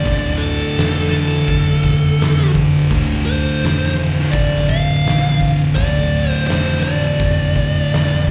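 An up-front, oversized low-tuned acoustic drum kit with a boomy kick, fat snare, hi-hat and a gritty, pumping big-room sound drives this brooding, sludgy stoner and doom metal excerpt at 84 BPM in D minor, as two thick fuzz guitars grind a low riff in the background, one of them carrying slapback echo, beneath a dark, distorted fuzz lead guitar melody with slapback echo and delay, while a round, amped hollow-body short-scale picked bass with overdrive holds the bottom, all heard as a live gig through the venue's PA in recital hall reverb.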